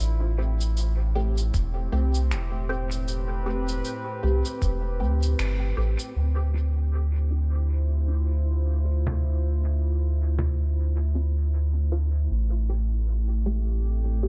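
A digital ambience with its top end rolled off frames this hazy, deep ambient dub excerpt at 78 BPM in D dorian with a swung 16th feel. A round, up-front triangle-and-square sub bass sits beneath a warbling, detuned sawtooth pad with chorus and reverb that holds Am7 and Dm7 chords. A muted, dark filtered chord stab adds phaser, analog chorus and dub echo, and a thumpy sampled kick plays briefly from 1.5 s. Muffled, tape-warm sampled cabasa, finger snaps and congas with low-pass filtering and dub echo carry on until 10.6 s, and filter sweeps shape the percussion and stab from 6.2 s.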